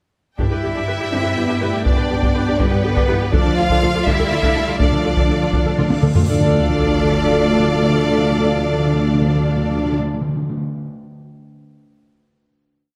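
Epic orchestral film score cue in D dorian at 82 BPM in 6/8, dark and heroic: focused, bright violins carry the tune doubled at the octave over a clear, distant second violin line, smooth violas and double basses driving ostinatos, a lush cello melody, a very quiet mellow tuba doubling the bass, and dark French horns entering at 1.1 s with a counter-melody and sustained chords, while compressed, saturated taiko drums pound a big ostinato until 6.4 s, close, dry timpani roll in from 3.3 s, and a huge cymbal swell leads to a low impact at 6.3 s that lands the final chord in a moderate scoring-stage reverb.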